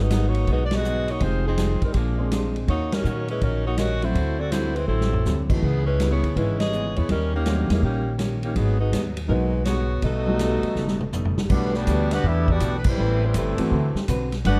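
A swung 4/4 groove drives this sultry big band jazz excerpt, where a dark, tight saxophone section with light vibrato carries the melody over woody, thumpy pizzicato upright bass, a punchy big-room drum kit that punctuates band accents and fills, a background concert grand piano with deep bass and long sustain, and a very quiet clean hollow-body guitar, while a nasal, straight-muted trombone section with soft attack joins in the background at 10.0 seconds before the harmony shifts at 11.5 seconds, in a dry, warm production.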